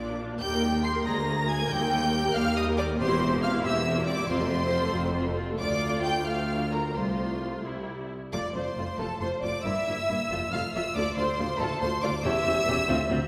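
Spirited and graceful, this short cut from a quick classical-period movement for string orchestra moves in 6/8 with a rubato feel, as a lush, focused violin section carries the high melody over a second violin line, expressive viola accompaniment with portamento, a smooth, close cello bass and a distant double bass section, all heard from further back in a scoring stage with a wet reverb.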